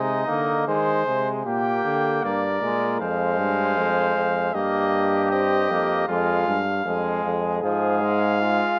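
A moderate scoring-stage reverb surrounds this brief slice of a classical brass canzona at 78 BPM in 4/4, driving yet contemplative, as a smooth-topped cornet carries the melody up front, a vibrato-tinged flugelhorn sounds a roomy second line, a brilliant, distant trombone supplies accompaniment, and a warm euphonium anchors the bass until 8.6 seconds over chords moving from Ab/C through Gm/Bb, Fm and Eb/G back to Fm.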